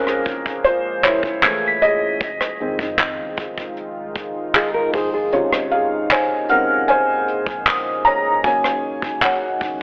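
A late-night, moody contemporary R&B fragment at 77 BPM in Bb minor, cut from a longer piece, built on a felt-muted upright piano that sits up front, intimate with audible action noise, over a deep, detuned sawtooth pad with chorus and its own reverb, a boomy sine 808-style bass in the background, and a soft FM synth bell with chorus and digital delay that drops out at 8.8 s. A soft brush kit with a tight kick, hi-hat, rim click and handclaps keeps a smooth, rolled-off feel, its kick muted from 5.3 to 6.9 s, while a thumb-plucked flamenco guitar slips in briefly with arpeggios from 4.6 to 5.5 s. The chords move from Gbmaj9 through Fm7 to Bbm9 and an Ab7sus4, and a small room ambience, moderate plate reverb and a telephone-like coloring give the mix a hazy, confined character.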